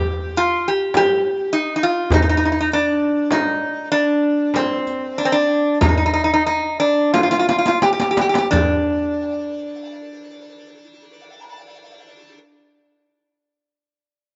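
A metal-body resonator slide guitar opens this soulful, longing piece in the Turkish makam ensemble style, cut from a longer performance. Played with fingerpicks and a slide, its nasal, metallic voice sits up front and carries the melody through a narrow middle range. Almost at once a crisp, deep darbuka with a metal shell, compressed and saturated, joins in, along with a riq whose bright jingles and hard hands sit in the background and a small frame drum that sounds distant, as if in a large room. Moving in 10/8 with a straight feel, the opening section gradually slows, and a drum fill arrives at 7.2 seconds to lead into the second section. The percussion stops at 9.2 seconds, leaving the guitar alone until it ends at 12.4 seconds. An echo-chamber reverb gives the whole mix a moderate sense of space, and its top end is rolled off into a softened, dusky sound.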